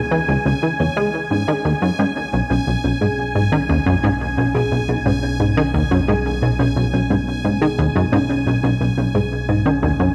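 A straight, steady 4/4 pulse drives this mysterious, hypnotic slice of sequencer-driven ambient space music, cut from a longer piece. Up front, a punchy, funky analog bass enters at 0.1 s with a saturated, wave-folded riff whose fast filter pluck decays quickly and trails a delay. Above it, a thumb-piano-like FM synth plays gentle arpeggios with a round, tine-like attack, softened by chorus and delay. Underneath, a warbling, detuned analog drone holds the low end with pulse-width modulation and chorus, while a bright, bubbling texture steps through random resonant filter changes, bathed in its own reverb. The harmony moves from C#m to B6, and the whole recording sits in a wet plate reverb with the soft patina of cassette tape.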